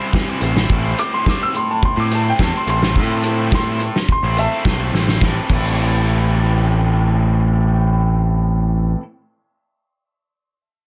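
A raw, overdriven garage guitar riff opens this restless, moody indie rock excerpt, soon joined by a loose, roomy drum kit with dark cymbals and a growling, up-front picked bass, while a clear, worn, slightly detuned upright piano carries a woody, tape-echoed melody from 1.0 to 4.7 seconds before a drum fill at 4.9 seconds leads into a new section, all within a dense, heavily limited modern mix.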